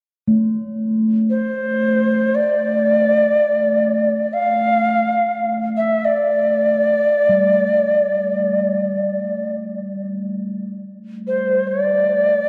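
Unfolding in free time, this haunting, meditative world piece in D minor drifts along with its pulse dissolved, heard here as a passage cut from a longer work. A bronze singing bowl opens at 0.3 seconds, struck with a felt mallet, its soft, metallic ring sitting low between G3 and A3 with a slow beating in the tone. At 1.3 seconds a mellow cedar flute enters with the melody, moving between C5 and F5 and carried a little above the bowl in level. Its woody, airy voice shows vibrato, tongued notes and a chiff, expressive and up front yet touched with a distant quality, and it carries a tape echo. Both parts sustain through to 12.5 seconds, bathed in a wet church reverb with a 2.9-second decay. The production leans dark and warm, with lossy compression artefacts audible in the sound.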